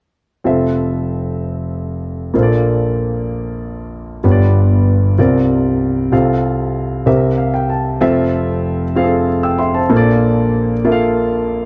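Gospel in F major, a hopeful and reverent passage cut from a longer piece, moving at 63 BPM in an unhurried 6/8 as a lone concert grand piano spans F1 to E6 over chords such as Fmaj7, Bbmaj7, G7 and C9sus4. The piano sits up front with an intimate, natural tone, deep bass and audible action noise, and a brief fill at 7.1 s leads into a second section at 8.0 s that returns to Fmaj7. Light reverb and a dark production frame the whole, closing at 11.7 s.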